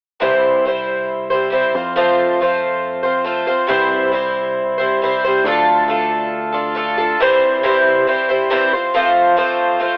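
Heard through a narrow telephone-like filter and washed in a moderate plate reverb, this rock passage, cut from a longer piece, has a jangly, warm mood. A picked twelve-string acoustic guitar sits up front with a boxy, shimmering, octave-doubled tone, picking through C, F, C and D minor at 138 BPM in a straight 4/4. Beneath it, a picked electric bass adds a direct, low foundation, sitting far back in the balance. The bass drops out at 7.2 seconds, leaving the guitar alone to return to C and F until 10.0 seconds. The music is in C major, tuned slightly sharp with A at 441 Hz.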